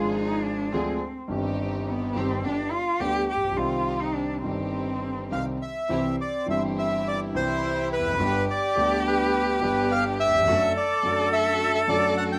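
In a moderate club reverb, this elegant, passionate rubato tango excerpt at 105 BPM opens in C harmonic minor with a nasal, boxy bowed cello solo full of vibrato and portamento, set over a dark concert grand piano's mellow, deep-bass accompaniment and veiled con sordino stabs from a muted string section in the background, until a reedy, smooth bandoneon takes the melody up front at 5.3 s and the music turns to C major at 5.9 s.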